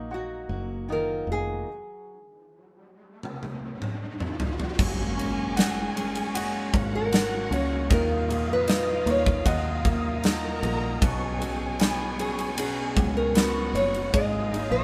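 Captured as a band playing live in a small room with moderate ambience, this tender, hopeful pop ballad moves at 77 BPM in a straight 4/4, in F# major, cut from a longer piece. A small, fingerpicked nylon-string guitar carries the melody over a clear, smooth concert grand piano with deep bass, while a dark, full-bodied jumbo steel-string guitar picks arpeggios in the background and a round, foam-muted fingered electric bass holds the low end. After a stop at 1.7 s, a huge arena drum kit with bright cymbals and a punchy kick comes in up front at 3.2 s with a fill beneath an electronic riser that lands on an impact. At 4.8 s a lush, distant symphonic violin section adds an expressive bowed second line, and a soft, flute-like tonewheel organ sustains chords through chorus vibrato and a slow rotary speaker. The harmony moves through add9 and sus2 chords, giving the passage an open, yearning lift.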